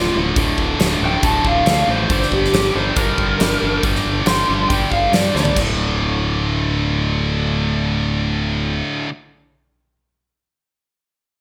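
A lo-fi lead guitar solo through a small cranked amp, with overdrive and delay, opens this aggressive, heavy hard rock excerpt over a crunchy overdriven guitar with subtle chorus, an up-front scooped high-gain guitar and a growling, punchy fingered electric bass, while a huge arena drum kit with a fat snare, bright cymbals and gated reverb enters at 0.4 seconds and plays a fill at 5.3 seconds before the solo gives way at 5.6 seconds to a D5 section, the whole heard through plate reverb and a 1980s-style digital production.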